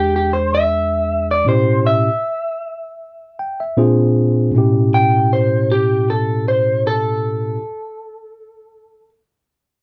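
A slightly broken-up, lo-fi electric guitar played through a small old amp carries the picked melody up front in this laid-back, gritty blues at 78 BPM, cut from a longer piece in A mixolydian with a gentle 16th-note swing. A mellow, clean tine electric piano accompanies over chords moving from E7 through A9 and Bb9, adds a fill from 3.0 s during a stop, and drops out at 7.6 s while the guitar carries on alone. The sound is a dry, close 1970s-style studio recording with light reverb.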